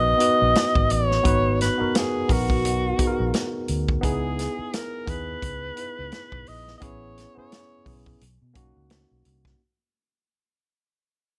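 A forceful alto saxophone carries the melody up front in a jazz style, its tone smooth on top with vibrato, until it stops at 8.0 seconds. This brief cut from a lush, romantic 1970s-style soul piece sits in 4/4 with a gentle sixteenth-note swing. A worn, mellow tine electric piano, slightly out of tune and heard clean through a combo amp, is also up front as accompaniment, moving through G#m7, C#m7, Amaj7 and Bmaj9. A dark, round, foam-muted fingered electric bass gives an amped low end. A vintage acoustic drum kit joins at 0.2 seconds with hi-hat, a medium-tuned snare and a punchy kick, its top rolled off. A small room ambience frames the parts, and the passage fades out across its full 9.6 seconds.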